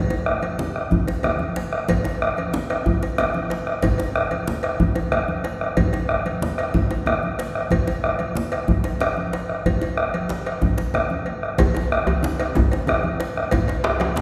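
Rolling in 12/8 at 124 beats per minute to the dotted quarter, with a straight feel, this short excerpt of West African traditional drum ensemble music sounds earthy and festive. The bombo sits up front with a deep, dark tone that carries a distant, large-room character. Around it, a metallic cowbell and a medium-tuned djembe sound close and dry, while congas with a low tuning and thick skin bring warmth and a small-room quality. At 11.6 seconds a second djembe joins, deep and played with soft hands in a live room, adding weight to the closing moments. The whole recording is bathed in a wet concert hall reverb with a 2.2-second tail, giving the ensemble a spacious, resonant setting.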